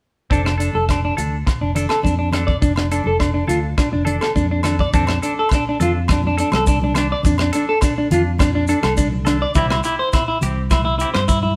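Highlife guitar band music in F major at 104 BPM in 4/4, danceable and joyful, with the whole group playing live in a stone room that adds a moderate reverb, in a short cut from a longer piece. A clean, picked electric guitar sits up front with arpeggios, while a compressed semi-hollow guitar with a hollow-body tone plays accompaniment beneath it, and a round, dark fingered bass anchors the low end. A dry, tight funk kit of hi-hat, kick and rim click drives the groove, with grainy maracas and ringing agogo bells in the background alongside bright, very quiet congas; the harmony rests on F6, the music shifts into a new section at 4.9 seconds, and it moves to C at 9.6 seconds.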